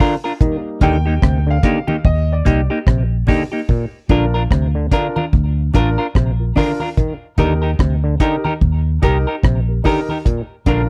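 A relaxed roots reggae groove at 73 BPM in 4/4, with a loose swing on the sixteenths, sits in Bb major and carries a warm, uplifting mood through this short cut from a longer piece. The deep drum kit, dark and up front with a tight kick, hi-hat and rim click, leads the mix alongside the round, foam-muted electric bass, which joins at 0.8 seconds. A clean, hollow-body semi-hollow guitar picks the accompaniment through tape echo, while an auto-wah clav, stringy and overdriven through a combo amp, adds low arpeggios. The woody upright piano, with its long sustain, takes a solo in the opening 3.7 seconds and then settles into stabs, and very quiet, low-tuned congas played with soft hands fill in the percussion. The chords move between Eb and Bb, and the whole recording has a dry, close 1970s studio sound with little reverb.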